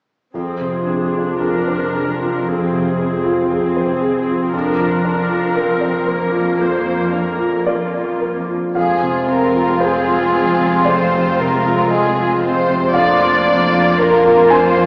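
Moving at a slow, rubato 58 BPM in 4/4, this bittersweet cinematic piece is cut from a longer work, opening on a grand piano with long sustain and a ringing concert harp arpeggiating in the background, while con sordino viola and cello sections supply veiled, muted accompaniment and bass over Fm and Bb/F. At 8.8 seconds the muted violins enter, one section carrying the melody on a soft-attack, vibrato line and another playing a lush, up-front second line, as a distant double bass section adds a dark low foundation. The whole ensemble sits in a wet recital hall reverb, heard from further back in the room with a small-speaker quality.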